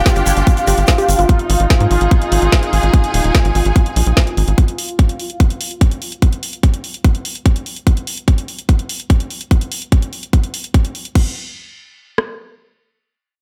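A psychedelic, alien passage of psychedelic trance, cut from a longer piece, running at 146 BPM in a straight 4/4, with the harmony moving from G5 to Ab5 before falling away. An up-front, punchy sequencer bass with tube saturation drives underneath, beside a bubbling, detuned stepped-filter texture whose sustained chords carry chorus, built-in reverb and sidechain pumping. A clear, bowed studio string section with vibrato adds a focused layer, also pumping, while a woody, warbling wave-folded pluck sits in the background with chorus and digital delay, and a grainy egg shaker appears only briefly. The tonal parts stop around 4.6 seconds, leaving the drums: a tape-warm garage kit with a tight kick and rim click, re-recorded in a large room and placed up front, layered with an overdriven drum and bass kit of crash, bright hats and a snare. That overdriven kit ends at 11.2 seconds, and the garage kit continues until 12.3 seconds inside a digital ambience.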